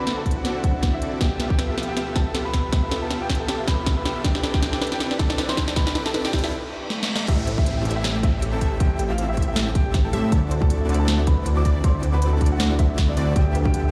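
Riding a swung half-time 4/4 pulse at 158 BPM, this dreamy, emotional future bass excerpt in A minor pairs a clear, boxy grand piano melody (pumping, low-pass filtered and tape-echoed) with a huge, airy supersaw riff, a brief felt-muted upright piano, distant bowed strings until 7.3 seconds, a soft round pluck arpeggio, quiet risers and a reverse cymbal over a build-up and break, and a hard-clipped kick with a crisp trap kit, before a fat, detuned analog bass and a lush unison pluck arrive at the 7.3-second drop, all washed in large studio reverb.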